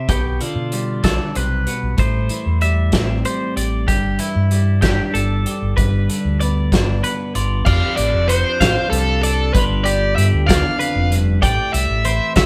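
Math rock and midwest emo in a restless, intricate 6/8 at 64 BPM, cut from a longer piece, where two bright, twangy twelve-string electric guitars play clean, compressed accompaniment and arpeggios over a round, dark fingered bass and a loose, up-front indie kit with a fat snare, punchy kick and pumping small-room sound, all played live in one lightly reverberant room, and at 7.7 seconds a warm, overdriven lead guitar joins to take the melody as the chords move through F69, G7 and Am7.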